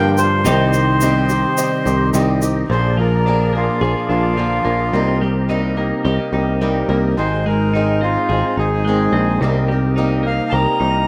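This rough home demo, cut from a longer piece, sits in light studio reverb and sounds unpolished. It is a reflective, wistful folk rock and heartland rock tune in C minor at 107 BPM in a straight 4/4, moving through Cm, Bb7, Cm7 and Ab. A reedy, airy accordion carries the melody up front and takes a solo from 2.7 seconds to the end, over a growly, direct picked electric bass and a bright, twangy twelve-string electric guitar riff. A boxy, swing-style acoustic guitar picks out accompaniment with audible finger squeak, while a fat, lightly overdriven tonewheel organ holds sustained chords in the background with chorus vibrato, key click and a slow rotary speaker. At the opening a very quiet, clear grand piano plays accompaniment and adds a short fill from 1.9 seconds before dropping out at 2.7 seconds, and a grainy tube shaker in a live room sounds from 0.2 until 2.5 seconds.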